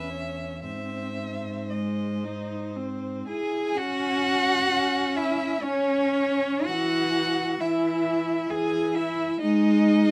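Moderate studio reverb gives this string quartet recording a gently resonant room, with the viola and cello sitting up front. It is a slow romantic classical movement in triple metre, played with rubato, and its mood is elegiac and solemn. The first violin carries the melody from the background, its dark tone shaded with vibrato and expressive portamento. The second violin plays a smooth, even second line with a warm sound, while the viola supplies accompaniment and the rich cello anchors the bass, each bowed with vibrato. All four players sound together for the full 10.1 seconds of this fragment from a longer piece, and the harmony arrives on a G#5 chord at 9.4 seconds.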